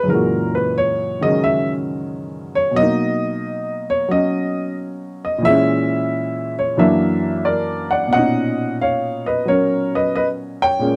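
Smoky and moody, this short solo jazz passage, cut from a longer piece, features a warm baby grand piano that sits present and up front in a dry, close 1970s-style studio sound with light reverb. In a swung 4/4, the piano moves through rich harmony such as F#13, Bmaj7, A#m7b5 and F#aug7, spanning F#2 to G5, before a new section opens at 8.1 seconds on Bmaj9. The instrument is tuned slightly sharp of standard pitch, with A set to 441 Hz.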